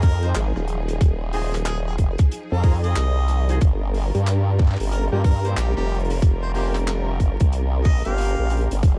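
A formant-sweep wobble bass with chorus and overdrive sits up front in this gritty, funky glitch hop excerpt at 92 BPM with swung 16ths, driven by a tight, layered electronic kick and an open jazz drum kit of handclaps, hi-hat and rim click, while a bright, scooped harmonica melody with delay, mellow horn stabs carrying 12-bit sampler grit, and distant, lush bowed strings pumping under the sidechain move from Fm7 to Gm7b5 in a dark production dusted with vinyl crackle.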